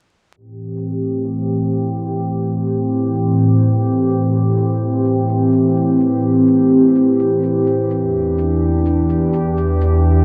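A warbling, tape-like pad stands up front in this melancholic, nocturnal future garage excerpt, holding sustained Am7 chords from 0.6 seconds before shifting to Em7 at 8.0 seconds. Built from detuned sawtooth and triangle tones with a slow attack and long release, the pad sounds mellow and nostalgic, coloured by chorus, phaser and its own reverb. A very quiet electronic shaker sits far beneath it, tape-warm and re-recorded in a small room, within a swung 126 BPM groove in 4/4. The whole passage is a single section in A minor with a filter sweep running across it. A lush hall reverb, vinyl crackle and a low-pass filter give the recording a hazy, lo-fi character, as though it were cut from a longer night-time piece.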